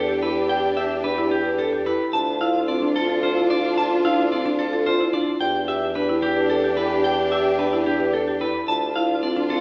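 A wet, reverberant hall sound surrounds this urgent, hypnotic passage of minimalist classical pattern music in 3/4, cut from a longer piece. A clean, picked electric guitar carries the melody up front, while a marimba with dark rosewood bars spins woody arpeggios and an airy alto flute with vibrato adds a mellow second line in the background. Lush bowed strings hold focused, sustained chords and a bassoon with light vibrato supplies the bass as the harmony shifts between Em7 and Dm.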